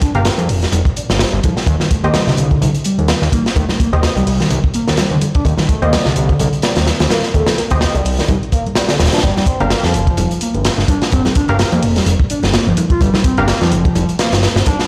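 Energetic and funky, this breakbeat excerpt at 127 BPM in G minor pairs a screaming, guitar-like overdriven synth lead riff, run through distortion, phaser and dub echo with a filter sweep, against a fat, nasal detuned analog bass, a saturated, gritty breakbeat kit up front with a tight kick, bold orchestra-hit-like synth stabs with built-in reverb and dub echo in the background, a dry electronic hi-hat and ringing congas, all over Gm7 and Eb6 chords in a stone-room space heard through a big sound system.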